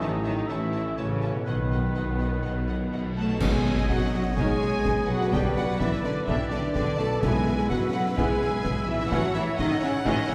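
A heroic, triumphant film-score passage opens with a lush, vibrato-rich violin section carrying the melody over a second violin section, oboe and clarinet on supporting lines, soft woody violas, ringing harp arpeggios, and sustained chords from mellow French horns and a distant trombone section, all anchored by smooth cellos, double basses and a roomy tuba. At 3.4 seconds a band accent lands with a dry crash of dark clash cymbals and bass drum, round soft-mallet timpani, and snare drum with bright cymbals. A pure, hollow silver flute joins on a second line just before, as the orchestra sits back in a reverberant scoring-stage space.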